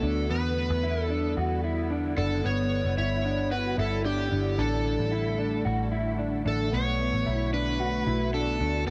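A haunting, ethereal stretch of dream pop in a straight 4/4, cut from a longer piece and lasting just under nine seconds. Up front, an overdriven slide guitar carries the melody through a digital delay, its tone warm within a narrow upper range. Beneath it, a mellow, clean electric guitar plays dark fingered arpeggios through ensemble chorus and its own delay. A warbling, lo-fi pad holds sustained chords with a slow attack and long release, its detuned, nostalgic haze colored by chorus, phaser and built-in reverb. A round, foam-muted electric bass sits prominently at the bottom, while the harmony moves from Em7 to A7sus4 at 4.6 seconds and settles on Bm7 at 6.7 seconds, all in a light reverb.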